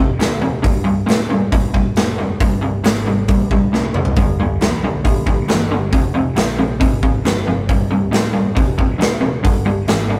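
Brooding and gritty, this short excerpt of blues rock and southern rock in C minor drives at 136 BPM in a straight 4/4, with a bright, double-tracked, overdriven garage guitar riff up front over a growling, overdriven picked bass in the background and a big, punchy acoustic drum kit with a medium-tuned snare that enters at 0.2 s and plays a fill at 3.7 s, all set in a rough rehearsal-room sound with light reverb and tube saturation as the chords move from F7(no3) and Cm9 through G, Fmadd9 and Csus2 to F5 and G5.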